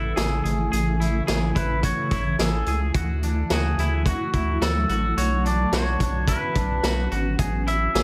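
A straight 4/4 pulse at 108 BPM drives this ethereal, blissful dream pop passage in A major, cut from a longer piece. A vintage acoustic drum kit enters at 0.2 s, sitting up front with a gritty, mid-forward character, a tight kick, a medium-tuned snare and hi-hat, its rolled-off top trailed by analog delay. Beneath it, a deep, thick sine sub bass with saturation and a fast attack holds the low end. A granular cloud pad of blurred, detuned triangle voices evolves slowly through its own reverb, while a twangy electric guitar plays clean, compressed fingered arpeggios touched by subtle chorus and analog delay. The pedal steel guitar carries the warm melody, played with fingerpicks and slide, using volume swells and analog delay, over a progression that moves from Amaj7 to Dadd9 and Bmadd9 before returning to Amaj7. Light reverb and a small room ambience give the mix an echo-heavy, dreamy glow.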